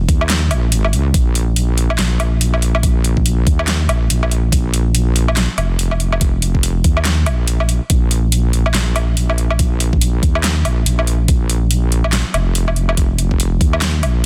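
A dense, heavily limited modern master in a digital ambience opens this dark, brooding excerpt of deep dubstep at 142 BPM, with a half-time feel and a 60% swing on the sixteenths. A heavy, saturated wobble bass of sawtooth and sine tones sits up front from 0.0 seconds, sustained, compressed and mellow under its chorus, while an overdriven, knocking electronic kick drum hits through a studio reverb. The layered dubstep drum kit brings a huge snare, metallic hi-hats, handclaps and woodblock with a tape-warm, up-front character until 14.1 seconds.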